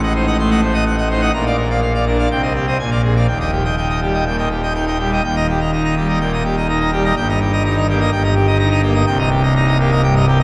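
Jubilant and brilliant, this classical organ toccata excerpt in Eb major moves at 125 BPM in a straight 4/4, tuned slightly high to A4 = 441 Hz. A solo pipe organ on full organ with mixtures plays throughout its 10.4 seconds, majestic and up front in a romantic voicing that spans C1 to C6, passing from Adim7 through Bb, Cm and Bb7 to settle on Eb by 3.3 seconds before a repeat of the opening section at 5.2 seconds. A wet cathedral reverb with a 4.6-second decay gives the sound its vast, resonant space.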